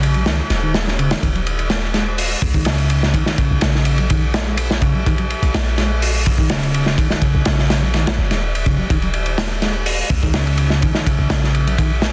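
Raw and gritty, this breakbeat excerpt rides on a crunchy, saturated drum kit of punchy kick, medium-tuned snare, hi-hat and dark ride cymbal sitting up front in a small room, while a deep, boomy 808-style bass with a fast attack and a noise layer underpins a dark, clean fingered electric guitar riff that trails a digital delay over a sustained Eb7(no3) chord.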